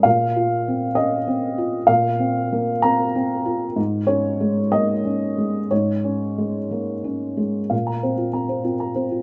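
A felt-muted upright piano, its thick felt giving a soft, dark, mellow tone placed up front, plays alone in this intimate, reflective neoclassical minimalist fragment in Bb minor, drifting with rubato at 59-66 BPM in 6/8 over Bbsus2 and Absus4 harmonies before a new section begins at 7.7 seconds, all in a rough home demo mix with light reverb and a dulled top end.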